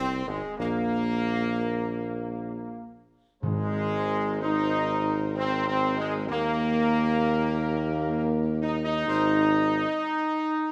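Heard in a moderate scoring-stage reverb, this solemn, regal classical brass passage in Ab major moves at a stately 64 BPM in 3/4, with a dark trumpet section carrying the melody in the background while a bright trombone section up front and a mellow, close-miked French horn section hold sustained chords over Ab, Abadd9 and Eb harmonies, a tuba with light vibrato anchoring the bass up front, and soft-malleted, round timpani sounding on Ab between 3.4 and 4.9 seconds.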